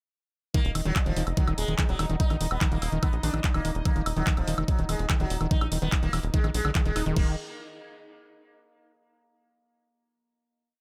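A digital ambience surrounds this short, hypnotic and driving psychedelic trance piece, which drops in at 0.5 seconds and runs until a final chord at 7.2 seconds. An up-front, overdriven electronic kick knocks out a four-on-the-floor pulse, joined by a layered, tape-warm techno kit of programmed hats, handclaps on the backbeat, high woodblock and crash. Underneath, a tight, nasal sequencer bass rolls in sixteenth notes with a punchy filter pluck, while a squelchy, gritty acid bass with a resonant filter sweep and distortion plays an accented three-step loop that drifts against the bar. A buzzing, plectrum-plucked sitar with shimmering sympathetic strings repeats a riff melody through phaser and tape echo. Far behind, a bubbling, detuned texture of random filter steps holds bright sustained chords as a drone, bathed in chorus and reverb, and the sitar, acid bass and bubbling texture all pump with sidechain.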